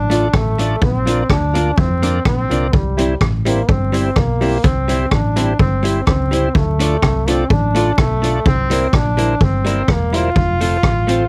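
A joyful, bouncy ska fragment at 126 BPM opens with a brilliant, punchy trombone carrying the melody with light vibrato over a round, dark hollow-body electric bass, joined at 0.1 seconds by a clean, compressed jazz guitar, reedy, lightly overdriven tonewheel organ stabs turning through a slow rotary speaker with audible key click, and an up-front street-band drum kit of boomy kick, hi-hat and rim click, all moving through Dm, Bb, C, C7 and F under a dry sound with vinyl crackle.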